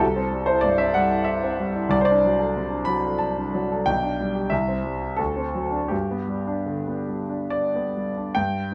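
In a rubato 3/4 that drifts between 68 and 97 BPM, this brief fragment of a romantic classical character piece in G major unfolds on solo piano with a brooding, bittersweet mood. The grand piano sounds warm and present, sitting up front with long sustain in light reverb and spanning B1 to B5. The harmony moves from C69 through D7 over C and G over B, then settles on G at 5.9 seconds.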